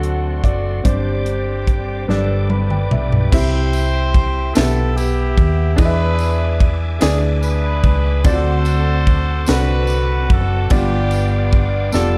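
A round, punchy hollow-body electric bass sits up front in this hopeful, jubilant slow gospel excerpt in 6/8 at 49 BPM in C major, where a crisp fusion drum kit with a high-tuned snare drives fills at 2.1 and 11.9 seconds, a tight vintage horn section carries the melody, a warm concert grand adds a brief opening line, a woody upright piano accompanies, a reedy tonewheel organ with fast rotary speaker and key click holds chords alongside mellow French horns, and a jingly tambourine joins at 3.3 seconds, all in a dark production with light reverb.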